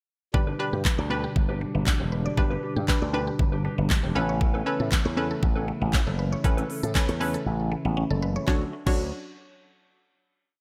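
Bright 1980s-style digital production with light reverb frames this short, euphoric dance-pop piece in D major at 118 BPM, where an up-front pop drum kit with knocking kick, fat snare layered with handclaps, crisp hats and gated reverb drives a four-on-the-floor beat beneath a punchy, sidechain-pumped slap bass run through an envelope filter, syncopated chords from a hollow, detuned square-wave pluck with chorus, a very quiet, dark funk-style electric guitar riff, a soft, pumping pipe organ pad on flute stops with chiff, and a woody, round FM mallet pluck arpeggiating in sixteenths with chorus and digital delay, before a silent gap at 7.5 seconds gives way to a closing Dmaj7 chord at 8.5 seconds.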